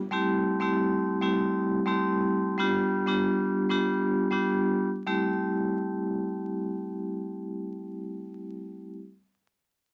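A dry, gritty hardware sound with transformer saturation, vinyl crackle and light reverb frames this moody hip hop fragment, cut from a longer piece, at 97 BPM in 4/4 with a swung sixteenth feel in A minor, tuned to A4 = 436 Hz. A vibraphone played with medium mallets sits up front as the accompaniment from 0.1 to 9.0 s, its metallic, ringing tone carrying a slow motor vibrato and a cassette tape coloring. The harmony moves from Am7 to G7 at 2.6 s and returns to Am7 at 5.1 s, where a new section begins.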